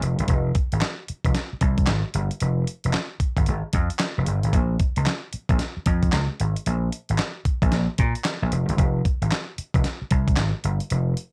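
Swung sixteenths drive this slick, confident new jack swing R&B excerpt, where a gritty, compressed sampler-style drum kit with a thumpy kick, fat snare, hi-hat and handclaps, tinted by cassette tape, sits up front beside a punchy, amped vintage slap bass in a dry home-cassette sound.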